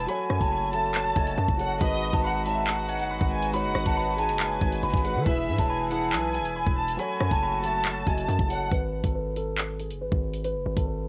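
Tense and dark, this drill cut moves in a half-time feel, built on a minor-leaning progression that settles on G#m at 8.7 seconds. A fingerpicked concert harp carries the melody throughout, its ringing tone filtered and softened by cassette tape and plate reverb, while a lush, vibrato-rich violin section adds a smooth second line through tape echo and plate reverb. Beneath them, a dark, boxy grand piano plays filtered accompaniment and a distant chamber string section holds bowed chords with a reedy, gut-string, period-style colour. A hard-hitting 808-style bass sits up front with a punchy, heavy sine body, a noise layer, a fast attack and a decaying tail. The electronic drill kit, also up front and run through cassette tape, drives the groove with a knocking kick, metallic hi-hats, handclaps and rim clicks. At 8.7 seconds the piano and both string sections stop, leaving harp, bass and drums to carry the final stretch of this fragment, all under a light reverb and the hazy character of a home cassette recording.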